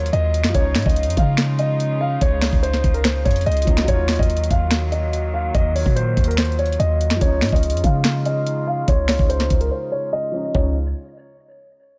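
A dark, mellow grand piano melody with audible action noise leads this triumphant yet wistful half-time trap excerpt from the start, alongside a soft felt-muted upright piano in the background and a reedy, gut-string studio string section holding sustained chords, all three low-pass filtered under a filter sweep, while a deep, boomy 808-style bass and an up-front trap kit with knocking kick, sharp snare, bright hats, finger snaps and toms drive the small-room mix until a break at 9.7 seconds.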